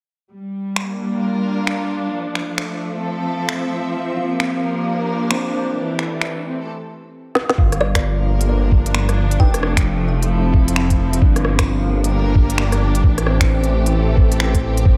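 Future garage at 132 BPM in G dorian, wistful and ghostly, built on a swung 16th-note groove. Rich, bowed studio strings with smooth vibrato pump under sidechain from 0.3 seconds, joined by crisp hats, finger snaps, rim clicks and a woody snare, then a dark, clean electric guitar with 12-bit grit and tape echo sits in the background. After a drum fill at 7.4 seconds, a menacing, detuned saw bass swells in beside a muffled, thumpy kick, while a hollow, ringing kalimba briefly adds a delayed melody, all in a dreamy mix soaked in plate reverb.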